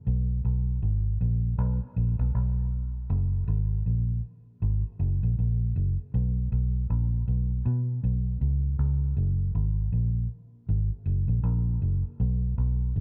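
A lazy swing on the sixteenths gives this 4/4 reggae fragment, cut from a longer piece, its hazy, laid-back sway. A vintage fingered electric bass plays alone from 0.1 s to the end at 13.0 s, its foam-muted tone dark, round and amped as it moves between F#1 and B2. The sound is dry and close, sitting up front in a 1970s-style studio room.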